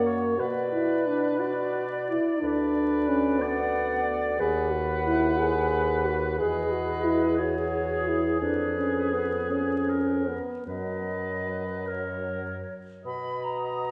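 A tender, lyrical slow romantic movement for wind quintet in rubato 6/8 at 49-62 BPM opens with a distant silver concert flute carrying the expressive, vibrato-touched melody over a mellow oboe second line, a clear, smooth clarinet and a warm, close-miked, soft-attacked French horn in accompaniment, and a dark, up-front bassoon bass, turning from B minor to B major at 4.4 s and settling on a B major chord at 13.1 s after the clarinet stops at 12.4 s, set in a reverberant concert hall with vinyl crackle.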